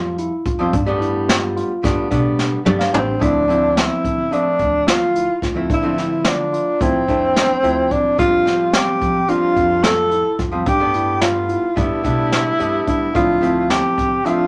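Progressive instrumental band music in a lopsided 9/8, driving and brooding, with a straight feel and a snug small-room reverb. A jazz drum kit played with brushes sits up front, its high-tuned snare and punchy kick joined by hi-hat and toms, while a pizzicato upright bass on gut strings gives a woody, thumpy low end. A clean, dark hollow-body archtop guitar, picked and amplified, supplies accompaniment, and a tine electric piano adds warm arpeggios from the background over Fsus2 and Gadd9. At 2.4 seconds the drums and guitar both play a fill leading into a new section, and a breathy tenor saxophone enters at 3.0 seconds to take the solo melody. Up front and smooth-topped, the sax plays in a jazz style with vibrato and scooped notes as the harmony moves through Dm7, Fsus2 and Gadd9 in this passage cut from a longer piece.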